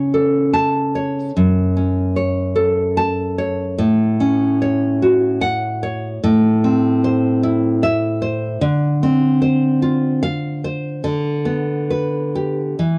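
Intimate and melancholic, this 13-second fragment of a longer romantic piece for solo nylon-string guitar moves at a rubato 74 BPM in 3/4, its full-bodied, fingerpicked tone sitting up front in a dry, close 1970s-style studio sound where finger squeak is audible as the harmony drifts from A/C# through F#m and Am to Dm7 and G/D.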